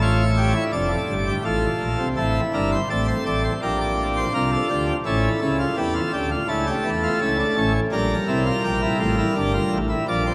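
Lively and joyful, this short cut from a longer baroque-style classical piece is a four-part fugue for pipe organ, moving at a steady 84 BPM in a straight 4/4. The organ plays alone throughout, sounding its full plenum with bright mixtures and a brilliant baroque voicing, and the pipes' crisp chiff sits up front. Its range reaches from a deep F1 to D5 on top, tuned to A4 = 438 Hz. After a brief opening phrase that moves from A7 to Dm/F, a new section begins at 2.2 seconds on Am and travels through Gm/Bb and a bright A major before settling on Gm as the cut ends at 10.3 seconds. The organ rings out in a vast, echoing space with a huge reverb that lingers for about 8.4 seconds, giving every chord a grand halo.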